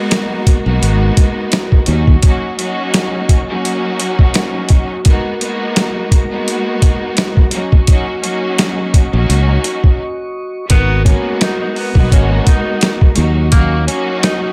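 Dark and gritty, this boom-bap hip-hop excerpt moves at 85 BPM in G# minor with a loose 16th-note swing, its compressed, pitched-down sampler drums thumping up front over a bright, lush string section and a mellow, flute-like tonewheel organ with key click and slow rotary speaker, all circling G#m9 and D#m7 chords in a dry room. A round, dark fingered electric bass appears briefly at 0.7 seconds and returns at 9.1 seconds, just before a short break ends at 10.7 seconds. At that point a breathy, soft-attacked tenor saxophone enters with a jazz-style solo line colored by vibrato and delay.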